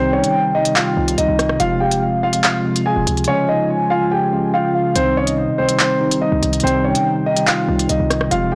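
A dark, mellow grand piano carries the melody from the first moment in this tense, ominous drill excerpt, its delayed line sitting up front with a deep low end. Around it, a velvety, vintage-sounding synth lead adds a smooth second line with chorus, vibrato and delay. A clean tine electric piano plays the accompaniment, and a very quiet, warbling, lo-fi pad holds detuned chords underneath. A short, punchy 808-style bass with a tight, decaying sine tone anchors the low register. The electronic drill kit enters at 0.2 seconds with crisp hats, handclaps and rim clicks in a half-time feel at 143 BPM, drops out between 3.3 and 5.0 seconds, then returns. In C phrygian, the harmony moves from Cm to Fm to Db and back to Cm, all within a blown-out, overdriven mix touched with light reverb.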